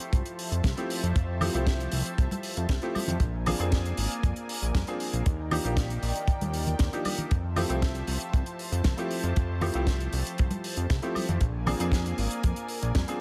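From the first moment, a bright grand piano, a lush sawtooth pad and a dry, tight funk drum kit open this sunny, groovy nu-disco excerpt in F major, moving at 117 BPM in a straight 4/4. The piano has a brilliant, slightly worn tone with short sustain, its accompaniment breathing with sidechain pumping and a touch of delay. Behind it, the airy, detuned unison pad holds slow-attack chords shimmering with chorus and phaser, while the kit's high-tuned snare, hi-hat and woodblock keep things crisp. At 0.1 seconds a fat, up-front analog bass arrives with a detuned, filter-plucked sawtooth sound that evolves as it sustains and breathes with sidechain pumping, alongside a dry, tight kick that sits at the front of the mix. Damped, high-tuned congas played with soft hands join at 0.6 seconds, sitting close yet tucked into the background. The harmony cycles through Fmaj7, Bb7 and Ebmaj7 before returning to Fmaj7 and Bb7, all set in a noticeable studio ambience.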